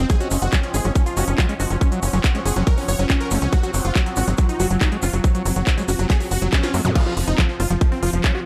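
An up-front electronic kick drum with a tight, tape-warm punch anchors this hypnotic psychedelic trance excerpt, joined by a nasal, driving sequencer bass and a drum kit of cracking snare, crisp hats, handclaps, toms and crash, with a grainy tube shaker tucked behind. Above them a bright, detuned supersaw stab carries the melody through phaser, cassette tape and digital delay, while a gritty, squelchy acid bass riff, a bubbling stepped-filter texture of sustained chords and a blurred granular cloud pad pump behind it under sidechain. A drum fill from 6.5 s and a distant zap lead into the drop at 7.0 s.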